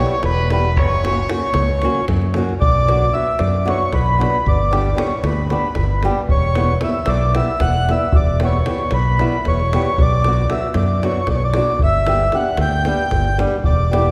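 A reedy, full accordion carries the melody from the first moment alongside fingerpicked flamenco guitar with fresh strings, a punchy, direct electric bass and a soft, floating sul tasto violin that drops out at 2.1 s, while a tight davul enters at 0.2 s to drive this restless, bittersweet Balkan wedding-band folk fragment in 7/8 through Em, F#, Bm and G harmonies, heard in the wet reverb of a church or concert hall and cut from a longer piece.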